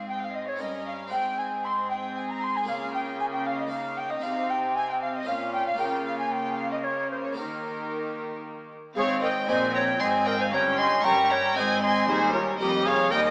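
Brilliant and festive, this short excerpt from a baroque-style concerto movement in Ab major moves at 115 BPM in a straight 3/4, tuned to A4 = 436 Hz. A wooden flute with an airy tone and crisp attack shares the melody with a gut-string violin section of light vibrato and a smooth top, while a second, close-sounding violin line, a reedy viola section and a nasal cello section fill out the texture over a dry, close-miked French-style harpsichord in the background. A double bass section joins the bass at 9.0 seconds as the second section begins, and the whole is bathed in a scoring-stage reverb yet heard through a small-speaker sound.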